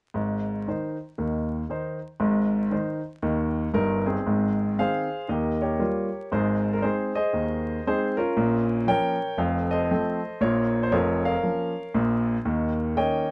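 Exuberant and swinging, this short stride-piano jazz excerpt at 117 BPM in Ab major features a clear, polished baby grand playing solo from 0.1 to 13.3 seconds across a span from F1 to G5, its up-front, long-sustaining tone caught by close, detailed microphones in a modest small room with a touch of vinyl crackle, as the harmony moves from Ab through Eb9, Bbm and F7 before settling on Eb7 at 12.5 seconds.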